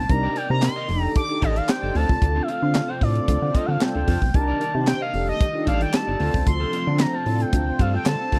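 Early-eighties boogie funk at 113 BPM in a slick, danceable groove, this dry, close 8-second excerpt pairs a tight funk kit of handclaps, hi-hat, high-tuned snare and tight kick with an up-front, glossy chorused synth bass, while a smooth, resonant synth lead with vibrato carries the melody over mellow, brassy synth accompaniment, a clean picked electric guitar riff and a swirling phased string machine in the background, all cycling through Cm9, F13, Dm7 and G9sus4/D.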